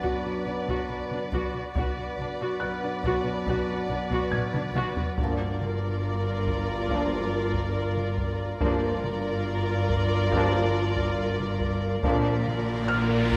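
Solo taiko drums struck with heavy sticks anchor this eerie, mysterious suspense cue, their small-room sound breaking into a fill around 4.3 seconds. At a slow 70 BPM in straight 4/4, con sordino strings carry the music: violins hold a veiled melody on D5 over a second line, violas add soft-attack accompaniment, and close cellos with double basses form a dark, bowed foundation. A distant horn section and a warm trombone section sustain chords in the background, while a glass harmonica adds ethereal, glassy tones above them. High in the texture, a felt-muted upright piano contributes short, intimate notes with audible action noise. The harmony moves from B minor to G minor seventh and lands on B flat. Near the close, hard-mallet timpani enter barely audibly at 12.0 seconds and an electronic riser rises from 12.4 seconds, all set in the wet reverb of a scoring stage.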